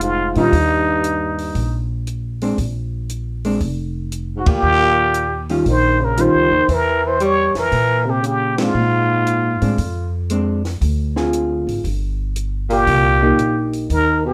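A relaxed 4/4 swing at 117 BPM rolls along on eighth notes, carried by a compact cocktail drum kit of hi-hat, ride, snare and kick that sounds dry and natural, with a high-tuned snare and a punchy kick, while the pizzicato upright bass sits up front with a woody, thumpy tone. This small-group swing and bop fragment in Bb mixolydian is led by a trumpet with a plunger mute, its raspy, growling wah-wah voice shaped by scooped notes, a soft attack and light vibrato. A dark, subtone baritone saxophone with a smooth top carries a low second line beneath it. A clean, picked electric hollow-body guitar comps close in the mix from 0.4 seconds, moving through changes like Eb9, a rootless C7b9/E and Dm7b5 before a brief stretch where the chords drop away and then a Cm7. The whole band hits accents at 4.4 and 8.5 seconds, and a moderate studio reverb gives the group a snug, intimate room.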